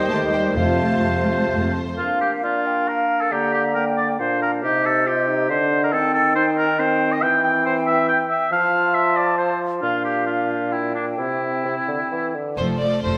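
In a quick 3/4 at 125-140 BPM with a rubato feel, this graceful, spirited classical-period orchestral excerpt in Bb major opens with the full ensemble: a rich violin section carrying the melody and a second line, a focused viola section and a cello section with soft attack and portamento in the background, a smooth double bass section, a very quiet mellow horn section, and a brief dry stroke of timpani. After about 2.0 s the strings and horns drop out, leaving the woodwinds that have sounded from the start, with a clear, up-front oboe, a hollow, airy flute and a distant, roomy clarinet carrying second lines over a punchy bassoon, as the harmony moves into F major from 7.2 s. The strings return at 12.6 s, all set in a wet scoring-stage reverb.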